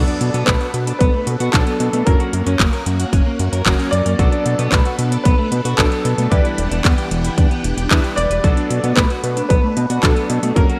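A bright, 1980s-style digital sheen with light reverb and digital ambience frames this nostalgic, bittersweet italo disco excerpt, cut from a longer piece and moving at 113 BPM in a straight 4/4 in B minor. A tape-warm house kit of handclaps and metallic hats, re-recorded in a small room, comes in at 0.1 seconds, and a punchy, up-front electronic kick joins it at 0.5 seconds, while a fat, detuned sawtooth bass with tube saturation sits thick and prominent underneath. The melody comes from a worn baby grand piano with long sustain, colored by ensemble chorus and digital delay. Further back, a swirling string machine holds slow-attack sawtooth chords through ensemble chorus and phaser, a dark, clean electric guitar picks arpeggios through lush chorus and delay, and a cutting, clangy electric grand piano adds vintage stabs. The harmony cycles from Bm7 through F#, back to Bm7, then Em7 and home to Bm7.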